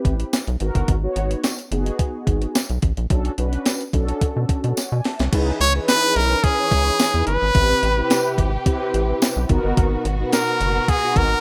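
A rough home-demo mix in digital ambience carries this funky, danceable early-eighties boogie funk excerpt at 108 BPM in C# dorian, where an overdriven, thumpy 12-bit drum machine and a rubbery, bouncy square bass sit up front under mellow, chorused synth brass and a jingly tambourine; a drum fill at 4.8 s ushers in a dark, lush string section at 5.3 s, and a brilliant, punchy trumpet melody with slapback echo enters at 5.6 s.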